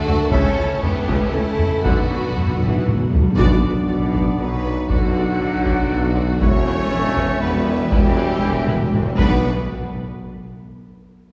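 Dramatic and epic, this cinematic orchestral film-score fragment in B minor moves at 119 BPM in 3/4, with a very quiet vibrato violin melody and a smooth-topped second violin line over lush viola, a close string section and bowed cello, double bass and clear tuba bass, while mellow, distant French horns and roomy trombones hold chords, a very quiet solo trumpet stabs briefly, a pure flute enters at 3.4 seconds, dry timpani come in around 1.9 seconds, and a heavy-sticked taiko ensemble plays throughout in a wet concert-hall space.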